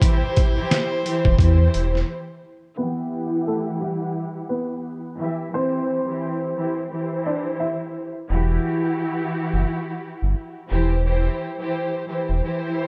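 Dark, moody boom-bap hip-hop at 87 BPM in E minor, cut from a longer piece, opening with gritty, pitched-down sampler drums (a thumpy kick and overdriven snare) and background horn stabs with delay, joined at 1.3 seconds by a deep sine-like sub bass, all of which drop out by 2.0 seconds. Veiled, con sordino strings with cassette-tape coloring carry the accompaniment throughout, and from 2.8 seconds a woody, slightly detuned upright piano takes the melody under a long filter sweep, moving between C/E and Emadd9. The sub bass returns at 8.3 seconds, and the dry, dark production keeps the sound warm.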